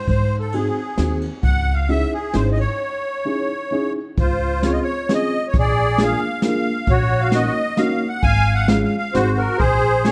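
Bittersweet and nostalgic, this musette waltz moves at 132 BPM in 3/4, opening in C# harmonic minor before brightening into Db major at 4.2 s. A reedy, shimmering musette accordion carries the melody up front from the very start, its musette tuning giving the line a trembling glow. Pizzicato upright bass with steel strings sounds woody and dark beneath it, while a jazz brush drum kit with dark cymbals, a medium-tuned snare and a boomy kick keeps time on hi-hat, kick, ride and snare. A dark, mellow upright piano joins at 0.5 s with intimate, slightly detuned vintage comping, its action noise audible. A break arrives at 2.8 s, and the second section moves through chords such as Dbmaj7, Bb7 and Ebm7/Bb before closing on Ab7 and Bb7(no3) in this clip cut from a longer piece. The whole sits in a moderate recital hall reverb with a dark, warm production.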